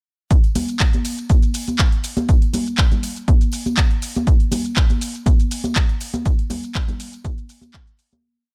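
A four-on-the-floor electronic kick drives this funky, sunny house piece at 121 BPM in 4/4, with a light swing on the sixteenths, the punchy analog kick sitting up front. A programmed drum machine adds clapped backbeats, closed and open hi-hats and shaker, while ringing acoustic tambourine and high and low congas, miked close, pump with sidechain compression. The dry drop begins at 0.3 seconds, and the kick stops at 7.8 seconds as the whole thing fades out from 5.6 seconds.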